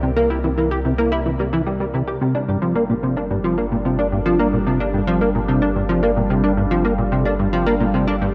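This short cut from a longer piece has a cassette-tape character, with a moderate plate reverb and an echo-heavy mix that lends it an expansive, hypnotic air. It is ambient, sequencer-driven space music in G dorian at 110 BPM in a straight 4/4, moving from C7 to Gm7 at 2.2 seconds. Up front, a plucky analog bass built from sawtooth and square waves plays a punchy, funky riff with a fast-attack filter pluck that decays, colored by ensemble chorus and tape echo. Behind it, a detuned sawtooth pad fades in across the full 8.3 seconds, holding swirling, evolving chords with a slow attack and long release through phaser and chorus. Underneath sits a deep, round sine sub bass, warm and sustained, anchoring the low end throughout.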